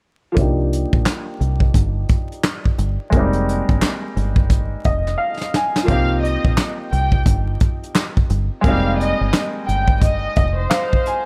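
Boom-bap hip-hop in C minor at 87 BPM with swung 16ths, moody and gritty: a clear, woody upright piano, coloured by cassette tape and a filter sweep, comps over a deep, round, foam-muted fingered electric bass and up-front brushed drums with punchy kick, snare, hi-hat and handclaps, before a floating, sul tasto violin section takes the melody at 5.9 s, the whole mix set in a dry small room with vinyl crackle.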